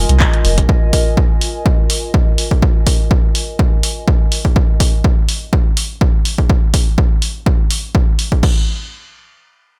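The sound is dry and up front, a gritty, driving slice of acid house cut from a longer track, with a light swing on the sixteenths over a single minor-seventh chord. A deep, round sine sub bass with sidechain pumping and a very quiet, moody pad built from detuned square, sawtooth and triangle waves with a wave-folded sub octave open together, both stopping by 0.6 seconds. Above them, a lo-fi, nostalgic tape-like pad warbles through chorus, phaser and its own built-in reverb, pumping with the sidechain until 4.6 seconds. The punchy analog drum machine brings crash cymbal, handclaps and hi-hat and is joined almost at once by a prominent electronic kick, both re-recorded in a large room and sitting forward in the mix. The drums carry on to 8.5 seconds, while the harmony gives way to a closing stretch with the chord removed.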